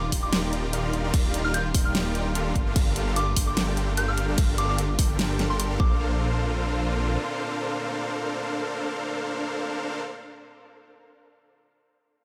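A lush future bass excerpt opens straight into a drop. A soft, pure synth bell carries the high melody through chorus and dub echo, while a bowed symphonic string section holds smooth chords in the background. Up front, a thick detuned saw bass sits underneath huge supersaw chords, whose riff is bright and tinted by cassette-tape colour and dub echo. A punchy, layered electronic kick and a pop kit with a fat snare, hi-hat and crash drive a lightly swung half-time feel, and sidechain pumping makes the bell, strings, bass and chords breathe together under light reverb. The harmony moves through Ebmaj9, Gm9 and Bbmaj9. Just before 6.0 seconds the drums fall away, the bell stops at 6.0 seconds, the bass ends at 7.2 seconds, and the supersaw chords and strings carry on to the close.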